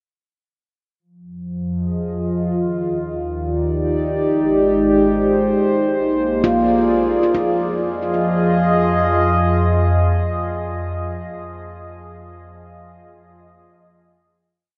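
Soaked in a vast, echoing reverb with a softened top end, this short ambient piece drifts in free time in F dorian with a reflective, serene mood. A warbly, nostalgic tape-like pad sits up front with chorus and phaser, holding slowly shifting chords from Fm7 through Ebmaj7, Abmaj7 and Bb7 as a filter sweep moves across it, before settling on a final Fm7 at 7.3 s. Meanwhile, a deep, ominous rumbling drone anchors the root from 1.4 s and fades out beneath. A ringing handpan enters at 6.4 s with a single meditative arpeggio loop trailed by delay.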